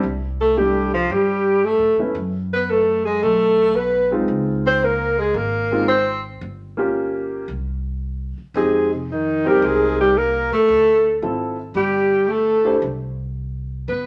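Small-group swing and bop jazz with a sophisticated, relaxed feel, where a mellow alto saxophone carries the melody in a smooth subtone with vibrato and scooped notes over a breathy tenor saxophone second line, while an intimate concert grand piano with audible action noise accompanies until 12.8 seconds and a woody pizzicato upright bass sits low beneath, all in a moderate large studio reverb in this fragment of a longer piece.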